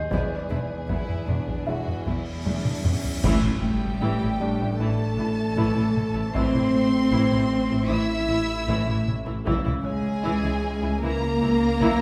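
Cinematic suspense score at 77 BPM, eerie and mysterious, where a rich, focused violin section carries the melody over a ringing Celtic harp riff, a warbling chorused analog drone, a sul tasto second violin line, distant violas, mellow French horn chords, background cellos and double basses, hard-stick taiko drums and a felt-muted upright piano, while a distant clarinet sounds only until 2.5 seconds, dark cymbals and concert bass drum build to a band accent and huge, bright impact at 3.2 seconds marked by a brief timpani hit, all bathed in a wet scoring-stage reverb as the harmony moves from E7 to Am and later C#m.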